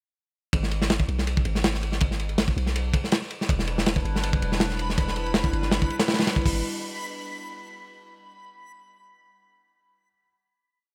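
A nostalgic, atmospheric mood runs through this short drum and bass piece with a jungle flavour and a slight swing. From 0.5 seconds a heavily chopped, crunchy breakbeat kit sits up front, its tight kick, medium-tuned snare, hi-hat and dark ride cymbal sounding saturated and gritty, with a rolled-off top that keeps the small acoustic room tone dark and smooth. Beneath it, a deep, sine-like 808-style bass plays long gliding notes with a fast attack and mellow decay, moving under chords from G#m to Em7. At 4.7 seconds a reversed, dreamy texture joins, holding a detuned, granular high note that swells in slowly and carries its own reverb. The drums and texture stop at 6.5 seconds, and the bass rings on briefly into a closing G#m7 chord in a small, ambient room.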